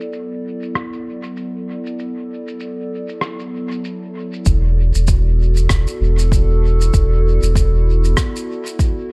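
Hazy and spacious, this ambient dub fragment at 97 BPM with a light 16th-note swing opens on a warbling, detuned, lo-fi pad holding an E5 chord under a filter sweep, coloured by chorus and phaser, beside a muffled shaker and rim click trailing dub echo, until at 4.5 s a deep, round sine sub bass and an overdriven, layered electronic kick drum arrive as the harmony moves to E7(no3), set in an echo-heavy mix with little reverb.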